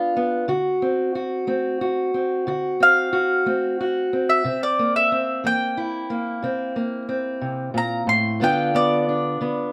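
Swaggering and soulful, this fragment of acoustic country blues in a straight 12/8 opens with a dark, boxy fingerpicked parlour steel-string guitar working through D7, C7 and G7, joined up front at 2.8 seconds by a mellow, round mandolin picking the melody on double strings, the pair set in a moderate studio reverb.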